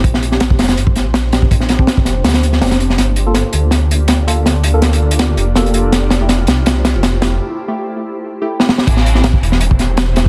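Drum and bass in a jungle vein at 163 BPM in A phrygian, dark and atmospheric, with a crunchy, saturated breakbeat kit up front, its high-tuned snare, tight kick and dark cymbals sitting under a rolled-off top. A thick, beating, menacing detuned saw bass sits alongside it, while deep, soft chord stabs with chorus and dub echo drift in the background over chords moving from Bb69 through Gm7 and Fmaj9. After a build-up with drum fills from 3.0 seconds and a break at 7.4 seconds, the track drops onto Am7 at 8.9 seconds in this short excerpt from a longer piece, all within a dense, heavily limited modern master.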